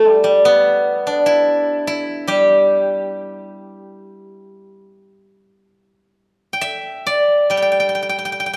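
A solo steel-string zither, played with fingerpicks, opens this brief fragment of a traditional Chinese piece, its silvery, ringing tone sitting up front across a range from D3 to G5. The mood is elegant and pastoral, moving in a rubato 4/4 at roughly 63-76 BPM in a G gong mode, with a new passage arriving at 7.5 s before the cut at 8.6 s. A moderate concert hall reverb lends the acoustic plucked strings an airy sense of space.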